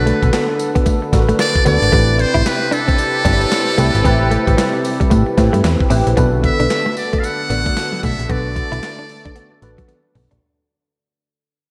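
Bouncy and slick, this new jack swing R&B excerpt moves at 113 BPM with a swung 16th feel over Bm7 and Am9 chords, as a buzzy metal-muted trumpet with light vibrato and analog delay carries the melody above a worn, slightly out-of-tune tine electric piano, a detuned sawtooth pad with a filter swell, a snappy FM slap-like bass, a clean direct-recorded guitar riff in the background, and up-front gritty sampler-style drums with handclaps and tambourine, all bathed in a dreamy hall reverb before a fade-out from 6.2 seconds and a drum fill at 9.9 seconds.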